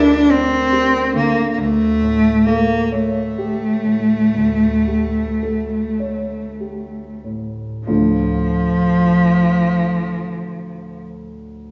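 Heard from further back in a wet recital hall, this passage carries plenty of reverb, yet both the cello and the grand piano sit up front. It is a romantic classical duo in D minor, in a slow, rubato 12/8 at around 30-49 BPM counted in dotted quarters, with an elegiac, yearning mood; it slows down through its opening 7.9 seconds as the harmony moves from Gm/D to A7/D before settling on Dm. A single bowed cello carries the melody with a rich, focused tone, vibrato and a smooth top, stopping at 11.0 seconds, while the dark, mellow piano accompanies with deep bass until the close at 11.7 seconds.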